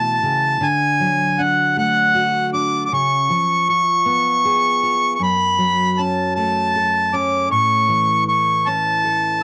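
A reedy, up-front accordion carries the melody in this peaceful, warm fragment of acoustic folk in A major at a slow 52 BPM in straight 6/8, while a full-bodied, fingerpicked dreadnought steel-string guitar sits lower in the mix beneath it, both parts colored by cassette tape in a home cassette recording with light reverb as the harmony moves from A through D, C#7 and F#m back to A.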